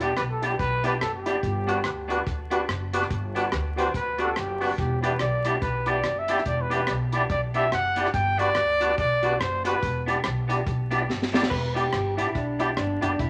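Ska at 143 BPM in E minor, with a swung eighth-note feel and a driving, mischievous mood, cut from a longer piece that moves between Em7 and Gmaj7. A breathy, intimate trumpet carries the pop-style melody up front, its soft attack, scooped notes and vibrato giving it a whispered, mellow edge until it drops out at 10.0 seconds. Beneath it, a clean picked electric guitar with spring reverb plays the accompaniment, while a fat, lightly overdriven tonewheel organ stabs through chorus vibrato, key click and a slow rotary speaker. A woody pizzicato upright bass on steel strings and a dry reggae kit with a high-tuned snare, tight kick, rim click, hi-hat and crash keep the groove, with a drum fill at 11.1 seconds. At 11.5 seconds a dark, compressed, fingered electric guitar steps forward to take the melody, while a large studio reverb and vinyl crackle lend the whole recording a vintage patina.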